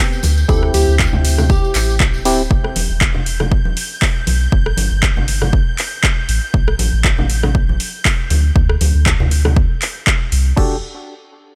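Deep house with a moody, deep feel, cut from a longer piece: an overdriven, punchy electronic kick and a layered kit of crash, handclaps, metallic hi-hats and rim clicks sit up front over a round, dark analog bass with a filter sweep and sidechain pumping, while ringing congas and a jingly, distant tambourine add percussion. Hollow, mellow organ stabs with chorus and tape echo open the clip alongside a bright, detuned plucky unison lead that plays only from 0.5 to 2.0 seconds through analog delay. A smooth bowed violin section with light vibrato hovers in the background until 10.6 seconds as chords such as D7sus4, Gsus2/A and Em11 pass by.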